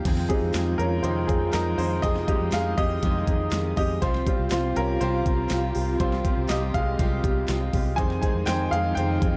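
Bittersweet and dramatic, this piano-driven pop excerpt rides a straight 4/4 groove as a clear, woody upright piano takes the lead up front, its intimate action noise audible, moving from Fm7 to Csus4 and back. A knocking, layered pop drum kit with fat snare, crisp hats, handclaps and crash sits alongside a round, foam-muted vintage electric bass, while a picked jumbo steel-string acoustic guitar plays a riff in the background with finger squeak. Very quiet bowed strings hold lush, dark sustained chords beneath a mellow, distant French horn section carrying a second line, all in a dark production with light reverb.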